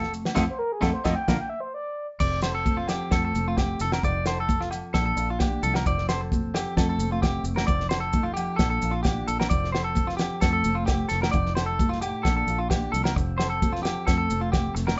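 A danceable highlife guitar band in F major at 131 BPM opens with the full band playing, and a reedy, woody FM lead plays a short chorused solo with vibrato from 0.5 to 2.1 seconds over a band accent. Throughout, a bright, twangy guitar on the edge of break-up plays picked arpeggios up front, a dark, clean second guitar accompanies in the background, and a round, foam-muted fingered bass anchors the low end. A dry 70s drum kit with a fat snare, tight kick and dark cymbals sits forward, while ringing agogo bells, grainy maracas and very quiet, high-tuned congas fill in behind, the whole band playing together in one room with moderate reverb.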